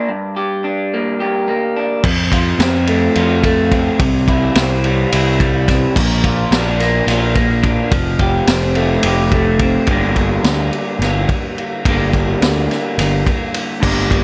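A light, small-room reverb frames this hypnotic, trippy psychedelic rock excerpt in 7/8 at 214 BPM in G dorian, where a bright, twangy, slightly broken-up electric guitar, run through a small old amp with phaser, opens alone on a lo-fi riff over Gm. At 2.0 seconds a round, fuzz-overdriven picked bass and an up-front vintage drum kit enter, with a punchy kick, high-tuned snare and dark crash and ride cymbals, as the chords move through F, C, Bb and Fadd9. The music shifts into a new section at 9.9 seconds, landing back on Gm before the cut.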